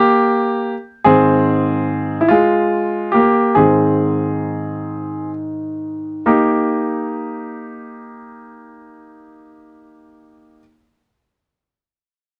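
A clear concert grand piano opens this short pop fragment in Eb major, playing alone as a tender, swaying accompaniment in a slow 6/8 at around 42-49 beats per minute. It begins on a rootless Eb chord, moves to Ab at 1.1 seconds, and gradually slows through to 6.3 seconds, when the harmony settles back on Eb and a new section begins. The piano sits up front with a polished, present tone and a deep bass, ranging from Ab2 to Ab4. A light reverb surrounds it within a dry, close recording that recalls 1970s studio sound, tuned slightly high to A4 = 441 Hz. The passage is cut from a longer piece.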